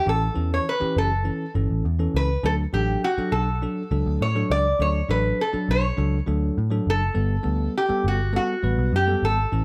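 Set in light reverb, this short excerpt of uptempo 1960s-style soul in D major moves at 102 BPM in a straight 4/4, danceable and uplifting, tuned slightly low to A4 = 438 Hz. An up-front lap resonator guitar carries the melody with a nasal, metallic slide tone played with fingerpicks, while a bell-like tine electric piano supplies clean, bright accompaniment. Underneath, a vintage foam-muted picked electric bass sits round and dark in the mix as the chords move from A to D at 2.4 seconds and on to Gadd9 at 7.2 seconds.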